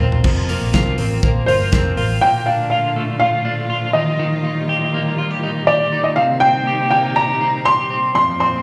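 Jangly indie pop in Bb major at 121 BPM, bright and breezy, this short cut from a longer piece opens on a drum fill with an airy, bright-cymbaled kit, round foam-muted bass and boxy, shimmering fingerpicked twelve-string acoustic that all drop out by 2.2 seconds, while a twangy, compressed twelve-string electric guitar keeps arpeggiating through harmonic tremolo, slapback and tape echo, a dark, worn upright piano with audible action noise carries the melody from 1.5 seconds, and soft-attack bowed strings with vibrato hold sustained chords from 2.2 seconds, all heard through a live club PA with light reverb.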